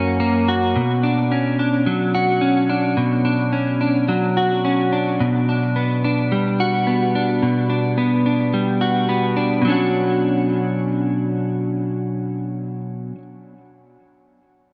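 Haunting and ethereal, this short dream pop excerpt is cut from a longer piece and rests on a steady, straight pulse in four. A lone clean electric guitar carries everything from its first note at 0.0 s to its close at 13.2 s, picked with a dark, scooped tone that sits up front and sounds tightly compressed. Analog chorus and dub echo trail each phrase, and a moderate spring reverb with a 1.9-second decay surrounds the guitar in an echo-heavy mix. The harmony opens on a single F# before settling into Bmadd9, shifting to Gmaj7/B at 5.2 s, and returning to Bmadd9 as a new passage begins at 9.6 s. Staying within a range from F#2 to F#4, the part feels suspended and dreamlike, its repeats lingering in the space around it.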